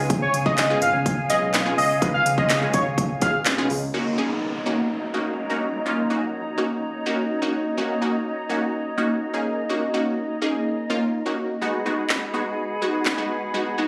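A bold, retro octave-doubled lead carries the melody from 0.2 to 3.3 seconds, its detuned sawtooth tone thickened by chorus, vibrato and digital delay, over a summery, euphoric dance-pop drop at 125 BPM in F# major. Under it, a punchy house drum kit with a cracking snare, crisp hats and handclaps sits up front, while a fat analog bass built from sawtooth and square waves holds the low end through the opening drop. A lush, bright unison pluck with a filter sweep and phaser plays accompaniment throughout, and an airy small flute group with soft attack and rolled-off highs sustains chords beneath it, both breathing with sidechain pumping. After the drop an electronic downlifter sinks in as the harmony settles from C#7 to F#6 and later G#m7, with the drums returning briefly near the end. The sound has the feel of a phone recording made in the room, with club reverb, light digital ambience and compression, and the passage is cut from a longer piece.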